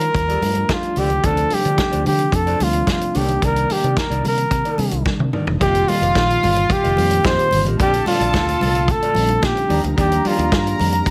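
A straight 4/4 disco groove at 110 BPM, driven by a dry, punchy soul drum kit with a fill at 5.1 seconds, a dark, round fingered electric bass and very quiet bright congas, carries this celebratory, joyful excerpt, as an up-front, close-miked flugelhorn sings the jazz-style melody with vibrato over a clean electric guitar and tine electric piano in the background, soft flute-like tonewheel organ chords with key click, and a reedy, gut-string studio string section that adds a second line from 5.6 seconds over chords moving from Ebmaj9#11 to Ebmaj7, all in light reverb.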